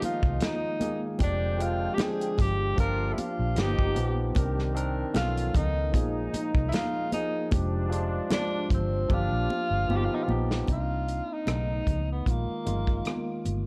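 A warm, vintage tenor saxophone with vibrato carries the melody up front in this bittersweet, silky 1970s-style soul excerpt at 76 BPM in F dorian with lightly swung sixteenths, backed by a barky tine electric piano through a combo amp, a round, punchy foam-muted fingered bass, a tight, distant soul drum kit with a fill from 9.1 to 10.7 seconds, bright high-tuned congas, and background horn-section stabs with a smooth top that stop at 10.3 seconds, set in a dark production with light small-room reverb.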